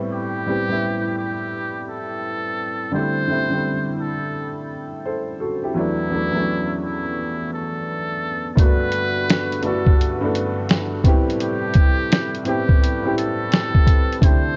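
The recording is nearly reverb-free and carries a cassette-tape grain, setting a melancholic, nostalgic lo-fi hip hop mood with a swung sixteenth-note lilt in 4/4. A woody, slightly detuned upright piano sits up front from the start, its vintage, smooth tone softened further by tape and a low-pass filter as it plays chords moving from Am9 through D7sus4 and E9sus4. Almost at once a trumpet with a metal mute carries the melody in a jazz style, bright yet buzzy and thin, with vibrato and a smooth top. At 8.6 seconds the music moves to a new section over Gmaj7, where a reedy, breathing harmonium enters with full, mellow, dry sustained chords. A sampler-style drum kit arrives at the same moment, compressed, pitched down and muffled, with a thumpy kick, medium-tuned snare and hi-hat placed up front. The harmony returns to Am9 at 11.0 seconds, the drums stop at 14.4 seconds, and the piano, trumpet and harmonium carry on to the end of this short excerpt.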